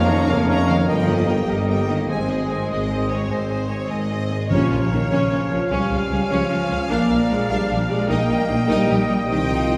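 A cinematic, heroic adventure score excerpt in 12/8 at 100 BPM, determined and adventurous in mood, moving through Bb dorian harmony from Bbm/F through Ab, Db and Bb to Eb/Bb. A clear, focused studio violin section carries the melody, shadowed by a very quiet chamber violin line, a pure flute, a clear oboe and a mellow clarinet, while lush violas fill in beneath, a dark, distant horn section and bright trombones sustain chords, and a trumpet section adds stabs. Cellos, double basses and a vintage-toned tuba anchor the bass, hard-mallet timpani sound an articulate Bb between 4.5 and 5.1 seconds, and a wet scoring-stage reverb places the orchestra further back in the room.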